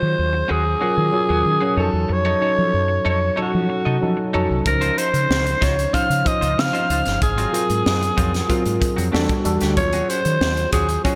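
A raspy, growling alto saxophone carries the melody up front over tine electric piano with analog chorus, a bright, compressed semi-hollow guitar riff with lush chorus and a round, dark fretless bass with ensemble chorus in this glossy, breezy 1980s jazz-funk pop excerpt at 94 BPM in Db major, with a punchy, gritty fusion drum kit wrapped in gated reverb entering at 4.7 seconds, all set in a lush hall under bright digital production.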